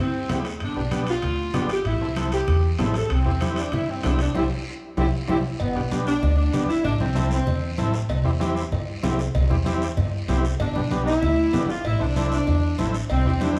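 A mellow, tight saxophone section carries the melody up front in this joyful, sunny cumbia, its smooth top giving the tune a jazz-style polish before it drops out at 7.8 s and returns at 10.6 s. Beside it, a woody pizzicato upright bass with steel strings sits just as close, anchoring the cycle of C, G and A minor chords. A buzzy, overdriven vintage combo organ with heavy vibrato fills in the accompaniment beneath the horns. Bright, damped congas played with hard hands sit in the background, and together with a raspy guiro they keep a small-room feel, while ringing metal-shell timbales and cowbell sit in the background too but sound more distant in a larger space. The band hits an accent around 4.4 s, capped by a short drum fill, and a moderate plate reverb lends the whole excerpt a sunny glow as it cuts off mid-piece.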